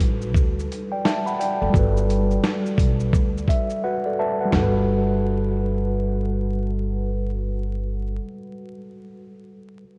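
A mellow tine electric piano, clean and up front with cassette-tape coloring and a low-pass filter, carries this dreamy lo-fi hip hop fragment in G major at 86 BPM with a 16th-note swing, opening on a Gmaj9 chord and adding a fill at 3.1 seconds. A woody, dark pizzicato upright bass holds the low end until 8.2 seconds, while a gritty, compressed sampler-style soul drum kit with a thumpy kick, medium-tuned snare, hi-hat, shaker and toms drops out at 4.7 seconds. The whole mix is soaked in cathedral reverb and vinyl crackle, with the highs rolled off for a hazy finish.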